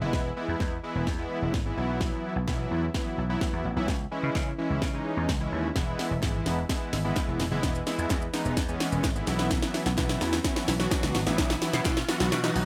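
Dance-pop at 128 BPM in E major, this carefree, upbeat clip is a short build-up with a running drum fill, where a fat, detuned sawtooth polysynth with chorus sits up front over an amped vintage slap bass, both pumping under sidechain. A house kit pushes a punchy kick, cracking snare, shaker and hi-hats through the whole passage, while a hollow, band-limited group handclap enters very quietly at 6.2 seconds and an electronic riser creeps in at 8.7 seconds. The chords move from E through Bsus4 and C#m, and the rough home-demo mix carries light reverb.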